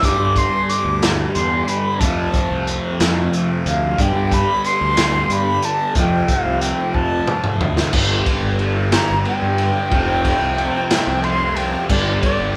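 Trippy and hypnotic, this short psychedelic rock clip in 6/8 sets a bright, reedy, airy flute melody with vibrato over a double-tracked fuzz guitar riff run through a phaser, a round, punchy overdriven fingered bass, a crunchy, gritty breakbeat kit with dark cymbals that plays a fill from 6.9 to 7.9 seconds, and a very quiet, fat tonewheel organ holding sustained chords through a slow rotary speaker, all alternating between G and F in a live-sounding large studio room until the flute takes a solo at 7.9 seconds.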